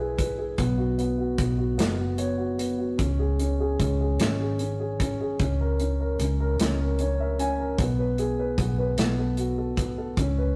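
A dark upright piano and a muted electric bass open this short six-eight pop ballad together, setting a romantic, heartfelt mood. The piano sits up front with a mellow, woody, vintage tone, carrying the accompaniment in the middle register and stepping out with brief fills at 1.8 and 6.6 seconds. Beneath it, the fingered bass is round, punchy and foam-muted, with an amped character that stays low. An acoustic country drum kit joins at 0.2 seconds, its tight kick, medium-tuned snare and hi-hat placed up front as if in a small room. The harmony moves through E, Bsus2, C#5, C#m6, G#m/B and B5, and the whole excerpt has the rough feel of a rehearsal-room take, with warm saturation and a moderate stone-room reverb.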